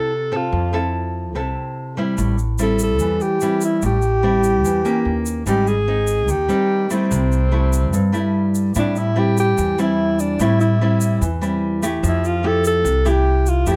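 Relaxed and sophisticated, this bossa nova excerpt moves at 146 BPM in a straight 4/4, starting in C major and turning toward A minor at 8.8 s. A mellow alto saxophone carries the melody up front in a jazz style, its vibrato and scooped notes sitting over a smooth top. Beside it, a full-bodied nylon-string guitar is fingerpicked in a classical manner, also placed up front, while an upright bass enters at 0.5 s with a woody, growly pizzicato tone from its steel strings. A grainy, bright tube shaker joins at 2.2 s, sitting close and dry and lower in the blend. The harmony drifts through rich chords such as Fmaj7, Eb7 and Abmaj7 before settling on Am7 and closing on Fmaj9. Captured with close, detailed microphones and little reverb, the sound feels intimate and clear, and the passage is cut from a longer piece.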